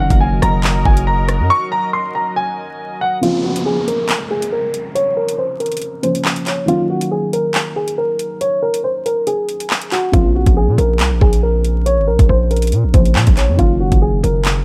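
Drill hip hop at 139 BPM in a half-time 4/4 feel, this tense, ominous excerpt sits in Bb minor, moving between Gb6 and Bbmadd9 chords. A worn baby grand piano carries the melody up front with long sustain, while a felt-muted upright piano plays a dark, intimate accompaniment beneath it, its thick felt and audible action noise adding closeness; both pianos pass through a low-pass filter. A detuned sawtooth pad with chorus and a slow attack holds sustained chords only until 3.2 seconds, where a downlifter effect takes over and runs to 6.7 seconds. The electronic drill kit stays prominent throughout with a knocking kick, metallic hi-hats, handclaps and rim clicks, and a heavy, aggressive 808-style bass with a noise layer and fast attack hits at the start, drops out, then returns at 10.1 seconds. The dry mix carries a layer of vinyl crackle, and a filter sweep shapes the piece from 3.2 seconds onward.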